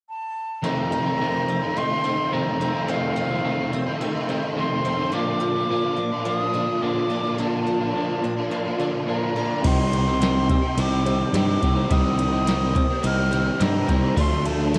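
Shoegaze and dream pop rock at 106 BPM in F mixolydian, hazy and wistful, this short section opens with a distant, airy silver concert flute carrying the melody through analog delay, joined at 0.6 seconds by a shimmering, octave-doubled twelve-string acoustic guitar picking arpeggios in the background alongside two overdriven electric guitar riffs, one biting and treated with reverse reverb, the other crunchy and chorused. At 9.6 seconds a growly, punchy fuzz bass arrives up front with a soft vintage rhythm box whose deep kick and tonal snare sound re-recorded in a small room. Cassette tape colouring and digital ambience give the home recording its dusty glow as the chords move from F7sus4 through Bbmaj7 and Cm7 to Dm7.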